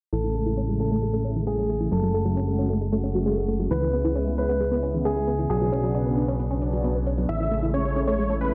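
Lightly reverberant and low-pass filtered, this soaring, emotional uplifting trance passage at 134 BPM carries filter sweeps across the tight, driving sequenced synth arpeggios and the lush, detuned pad chords from Amaj7 through F#madd9, C#m7 and Bmadd9. A fat, thick analog bass sits up front beneath a very quiet metallic electronic hi-hat, while an intimate grand piano with audible action noise plays a second line until 7.2 s. At 7.3 s a huge, compressed supersaw melody with vibrato enters, upfront and echoing through its delay.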